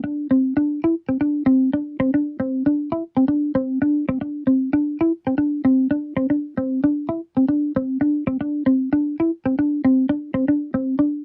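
Dry and close, with a light reverb and a 1970s studio feel, this short cut from a longer highlife piece is joyful and danceable, moving at 115 BPM in a straight 4/4 in C major. A mellow electric guitar carries it solo from 0.0 to 11.2 seconds, sitting up front with a dark, clean, fingered tone touched by phaser. It stays in a compact range from C4 to E4.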